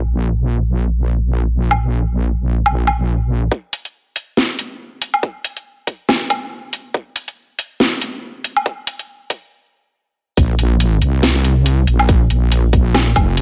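Softened at the top and touched by light reverb, this cavernous, dark cut from a longer deep dubstep piece at 140 BPM, with a swung half-time feel, opens on a heavy, saturated, detuned sawtooth-and-sine wobble bass with chorus, brings in a filtered garage kit of cracking snare, bright hats and woodblock at 1.7 seconds, then adds a tight, up-front electronic kick at 3.5 seconds for a build-up that halts in a brief stop before the bass returns for the drop at 10.4 seconds.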